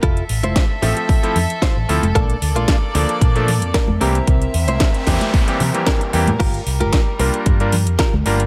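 A cosmic, sleek nu-disco excerpt at 113 BPM in G dorian opens with a reedy chamber violin section holding sustained chords under sidechain pumping, a bright, direct clean electric guitar riff with subtle chorus and dub echo, a picked electric bass through an envelope filter, a punchy, up-front electronic kick and a house kit with cracking snare and metallic hats. Soft-handed background congas join at 0.4 s and a clear, vintage electric grand piano with a clangy bass enters at 0.8 s, while a background noise sweep enters at 4.6 s over a dry Fmaj7–Bbmaj7–C7–Gm7 progression.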